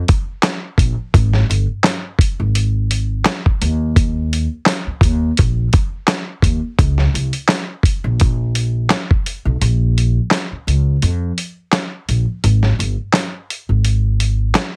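Boom-bap hip-hop in Bb dorian at 85 BPM, this gritty, moody cut from a longer piece rides a swung 16th-note feel, with a dusty sampler-style kit of thumpy kick, medium-tuned snare, hi-hat and handclaps starting at 0.1 seconds. A pizzicato upright bass with steel strings and a woody tone joins at 0.8 seconds, sitting up front alongside the compressed drums. At 9.6 seconds the kick drops out for the second section, and the whole mix has a dry, heavily compressed radio sound.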